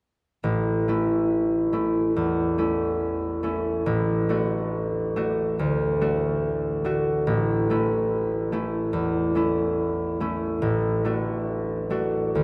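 A concert harp, sitting up front with a ringing, fingerpicked tone, carries this serene, lyrical classical fragment from 0.4 to 12.4 seconds, cut from a longer piece. Played with a rubato feel around 71 BPM in 4/4 and in A major, its accompaniment alternates between A and D over A. The harp sits within a vast cathedral's long, wet reverb.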